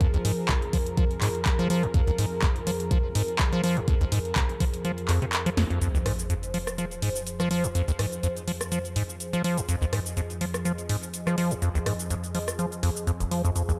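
Hypnotic and trippy, this acid house cut, taken from a longer piece, rides a swung sixteenth-note groove in four. An up-front square-wave acid bass drives a riff with a squelchy, hollow, resonant tone, with a filter sweep, a fast attack, tube saturation and tape echo, while sidechain pumping makes it breathe. Underneath, a detuned sawtooth pad holds sustained chords, mellow and smooth with a soft attack, long release and chorus, pumping gently in the background. A thumpy, tape-warm sampler-style kick sits up front until 4.7 seconds, while an overdriven analog drum machine keeps going with handclaps, hi-hat, rim click, shaker and a punchy snare set in a short room. A drum fill and band accent mark the turn into the next section, where an electronic sub drop hits from 5.8 to 7.7 seconds. The whole recording sounds dry and gritty, like hardware, with light digital reverb.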